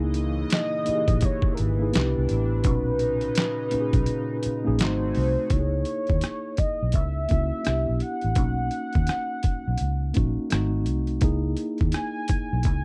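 This is a dry, close recording in a 1970s studio style, with little reverb and the parts sitting up front, cut from a longer R&B and neo-soul piece in C# dorian with a sultry, smooth mood. At 84 BPM in 4/4 with a swung sixteenth-note feel, a boom bap sampler-style drum kit sets the groove with a thumpy, pitched-down kick, a medium-tuned snare, hi-hat, rim click and handclaps, all overdriven and gritty, and the kick drops out from 4.1 to 5.5 seconds. Beneath it, a vintage muted fingered electric bass plays low, dark and round, with a punchy amped tone. A mellow tine electric piano, clean and heard through its built-in speakers, carries the accompaniment through chords that move from C#m69 to Cmaj9, Bmaj9 and G#7b9 before returning. A shimmering, retro pulse-width pad holds sustained chords with a slow attack and chorus, then stops at 5.5 seconds as the second section begins. Above everything, a velvety synth lead blending sawtooth and triangle tones sings the melody from 0.5 seconds, sustained and smooth with chorus and vibrato.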